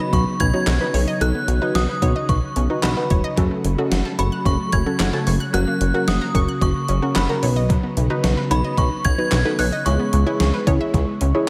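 A ringing FM synth chime carries the high melody over a warbly, lo-fi dusty pluck, while vintage string-machine violas hold phased, sustained chords in the background and a round analog pluck plays arpeggios through delay and shimmer reverb. Almost at once, a glossy, detuned chorused synth bass and a thumpy, overdriven 80s digital drum machine arrive up front, its gated-reverb snare, handclaps, kick and hi-hat giving this driving, nocturnal synth-pop excerpt its pulse. The echo-heavy mix sits in a moderate chamber reverb as the chords move from Badd9 through F#m and F# back to Badd9, closing on C#m7.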